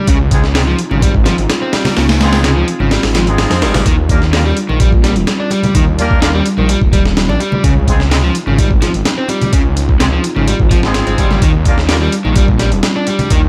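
A compressed, pitched-up breakbeat kit sits up front in this funky, playful breaks cut from a longer piece, its thumpy kick and high-tuned snare carrying a gritty, sampled character and the air of a large room. Beneath it, a thick detuned saw bass growls with a beating, saturated and menacing edge, while an overdriven electric guitar plays a picked riff roughened by vintage 12-bit sampler grit and touched with digital delay. A horn section adds distant, roomy pop-style stabs from 0.3 s to 12.0 s, its octave-doubled ensemble colored by light vibrato and its own digital delay. In the background, a warbling, nostalgic lo-fi pad holds dark sustained chords with chorus, reverb and sidechain pumping, moving between Dbmaj9 and Ebmaj9. Very quiet congas played with soft hands bring a bright acoustic sparkle from 0.9 s, and vinyl crackle with light reverb gives the whole track a dusty sheen.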